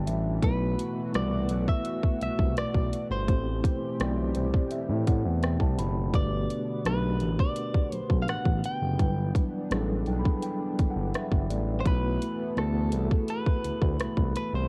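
Contemporary R&B at 84 BPM in a straight 4/4, smooth and romantic, cut from a longer piece and captured as a dry home recording on cassette. A mellow tine electric piano, heard through built-in speakers, carries the accompaniment and slips in short fills at the very start, around 4.0 seconds and again near 9.7 seconds. Behind it a shimmering, retro pulse-width pad with detuned sawtooth and square layers, a sub octave and chorus holds slow-attack chords in the background. Up front, a saturated, wave-folded synth bass glides between notes with portamento and vibrato, while an electronic trap kit punches through with a hard-clipped kick, metallic hi-hats and rim clicks. From 0.4 seconds a clean, compressed electric guitar, recorded direct and picked, sings the melody through an analog delay over changes that move from B7sus4 through Am9, Gmaj7 and Em9/G before returning to B7sus4.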